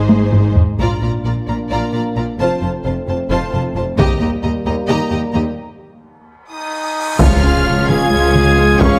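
Adventurous and heroic, this short cut from a longer epic orchestral film score drives along at 262 BPM in a straight 7/8, centred on Bb major. A bright, close violin section carries the lush bowed melody high above a second violin line and a smooth, even viola accompaniment, while a mellow French horn section holds sustained chords beneath. Cellos sit in the background and a distant double bass section anchors the low end, all framed by a wet recital hall reverb. A vintage, band-limited taiko ensemble pounds with heavy sticks, opening on a fill, then drops away at 4.4 seconds, shortly before the harmony gives way to a break at 5.6 seconds. At 6.5 seconds a clear, roomy solo trumpet begins punching out stabs and a huge cymbal swell rises, landing on an impact at 7.2 seconds as the taiko return and the music turns to a new section on a Db chord.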